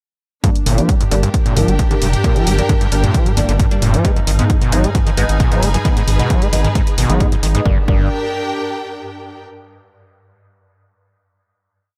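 Driving peak-time techno, hypnotic and intense, built on a punchy four-on-the-floor kick, overdriven programmed hats and toms, and a gritty, saturated off-beat synth bass, while a screaming, squelchy acid line loops seven steps against the bar through a long filter sweep, muted dotted-rhythm dub chord stabs drift through phaser and dub echo, a very quiet swarming drone hovers beneath, and a clear, lush string section shifts slowly before ringing on alone through the final chord after 8.1 seconds.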